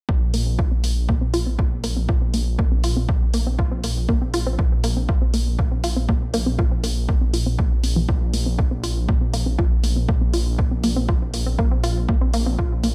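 A straight pulse from a punchy analog electronic kick and dark, layered hi-hats with sidechain pumping drives this cinematic, hypnotic melodic techno excerpt, where a rumbling, saturated detuned saw bass sits up front beneath lush unison pluck arpeggios that pump, trail dub echoes and ride a filter sweep, all in a dry, dark production.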